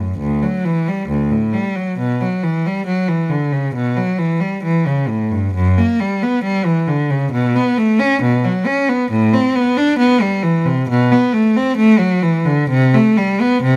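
A single bowed cello carries this baroque-style suite movement on its own, played up front by one player from the first moment to the close at 13.8 seconds. Its tone is clear, with an airy quality in the bow and vibrato, yet the playing also has an intense focus. The line moves through a range from D2 to D4, and the tempo breathes freely with rubato, giving the classical piece a serene, radiant mood. Close, detailed microphones capture the instrument, and a light reverb adds a little space around it. This brief passage is cut from a longer piece.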